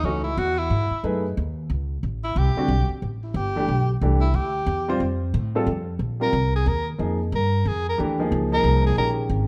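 A dark, warm production with moderate large-studio reverb frames this short cut from a longer jazz piece, hypnotic and spiritual in mood, swinging in 3/4 at 182 BPM. A bright tenor saxophone with vibrato and scooped notes solos up front over a clear, intimate concert grand piano, whose action noise is audible, and a woody, thumpy pizzicato upright bass, moving through chords such as F#m9 and Am11. At 6.0 seconds the harmony settles into Bb dorian on a Bb13sus4, and at 6.2 seconds a soprano saxophone with light vibrato takes over the melody in a short, present solo.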